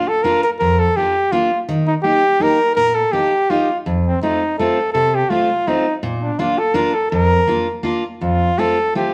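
Alpine folk from an alpine dance band, bouncy and festive in a lilting 3/4 at 166 BPM with a light swing and rubato, in Bb major, cut from a longer piece. A clear, close-miked flugelhorn carries the melody up front in a classical solo style, while a full-bodied jumbo steel-string acoustic guitar is picked beneath it, with audible finger squeak, moving through Bb, Eb, F7 and back to Bb before landing on F at 8.2 seconds. The band plays live together in one room, with a moderate large-studio reverb giving the sound some space.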